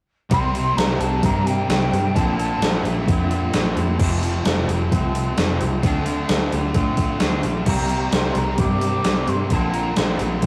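A gated 80s digital drum machine sits up front in this short cut from a longer shoegaze and dream pop rock piece, its thumpy kick and overdriven, gated-reverb snare ringing through a large room at 130 BPM in a straight 4/4, under a blissful, wistful C mixolydian progression that moves from C7 through Bbmaj9#11, Fmaj7 and Dm7. A round, foam-muted vintage electric bass and a clean, twangy fingered guitar carry the low end and riff alongside a bright, double-tracked overdriven guitar in the background and a very quiet, dark fuzz guitar. A distant, breathy flute with vibrato and a hollow chiff drifts in with melody from 0.3 to 3.5 seconds and again at 7.7 seconds, all set in a moderate stone room with the warm saturation of a rough rehearsal-room recording.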